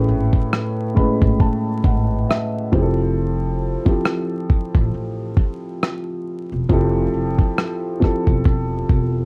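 A dark, dry production dusted with vinyl crackle frames this nostalgic, dreamy lo-fi hip hop fragment, cut from a longer piece, with a lazy swung feel that drifts from Amaj9 to Fmaj9 at 2.7 seconds. A mellow, boxy upright piano sits up front, its audible action noise, long sustain and cassette-tape haze giving an intimate glow as it plays a fill from 0.5 to 3.2 seconds. A woody pizzicato upright bass rumbles low beneath it, while a gritty, overdriven sampler-style drum kit, entering at 0.3 seconds, pushes forward a thumpy kick and rim click.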